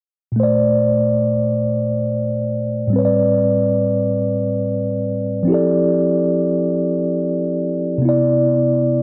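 Tender and intimate, this brief R&B fragment in a straight 6/8 features a lone tine electric piano, mellow, clean and up front, moving through lush chords from Bbmaj9 through Am11 and Fmaj13 to Cmaj9. The piano plays alone from 0.3 seconds to the end at 9.0 seconds, spanning a low A2 up to D5. A moderate plate reverb with a long tail gives the close, direct tone a soft glow.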